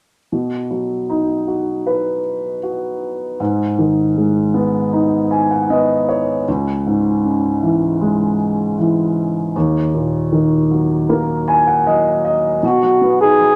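In a straight 4/4 at 78 BPM, this heartfelt, tender pop ballad excerpt in B major opens with a dark, long-sustaining grand piano up front, moving from B through G#m, C#m and D#m with fills around 4.9 and 11.1 seconds in a wet studio reverb, until a breathy, whispered flugelhorn with light vibrato and a soft attack enters at 12.6 seconds for a brief, intimate jazz-style phrase as the chords return to B.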